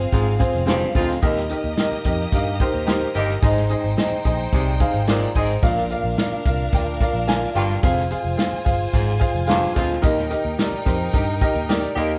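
A wet, roomy studio reverb of about 1.0 s surrounds a band playing live together in one room on this uptempo, 1960s-style soul passage in Eb major, set at 109 BPM in 4/4 with a straight feel. The danceable, uplifting groove rests on an acoustic drum kit, up front in the mix, with a punchy kick, medium-tuned snare and hi-hat, alongside a dark, round, foam-muted picked electric bass that stays low. A woody, worn and slightly detuned upright piano, also up front, fills in the accompaniment across the full 12.2 seconds. A clear baritone saxophone carries a jazz-styled riff with scooped notes, while a vintage saxophone section sits in the background and a biting, intense violin section with light vibrato plays close as a second line. The chords move through Fm, Eb, Ab and Bb before returning to Fm and Eb, and the passage is cut from a longer piece.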